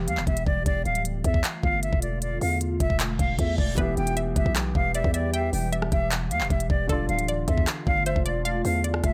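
Melancholic and brooding, this short cut from a longer trap piece moves at 154 BPM with a half-time feel in E phrygian, its harmony shifting between Em and Dm. A growling, buzzy 808-style bass sits up front alongside a trap drum kit with a knocking kick, crisp hats, handclaps and rim clicks. An airy silver concert flute carries the melody with unsteady vibrato and tongued notes, trailed by tape echo, while a glassy FM pad holds ethereal sustained chords with slow attacks, ensemble chorus and its own reverb. A soft, felt-muted upright piano adds intimate accompaniment with audible action noise, sounding briefly at the start and returning at 3.8 seconds after a reverse cymbal sounds near the end of the opening break from 3.2 seconds. At that point a hollow, bouncy square-wave pluck with detuned chorus and tape echo enters as a second line, all set within an echo-heavy digital ambience.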